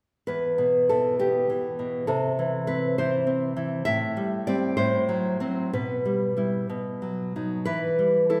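Wistful and intimate, this brief romantic passage for solo classical guitar moves in a flexible, rubato 6/8, cut from a longer piece. The fingerpicked nylon-string guitar sits up front with a bright tone, spanning from low E2 to E5 as it travels through Em, C, Am7 and a diminished chord before settling on B and resolving home to Em at 7.7 seconds. A wet concert hall reverb surrounds it with a lingering, spacious glow.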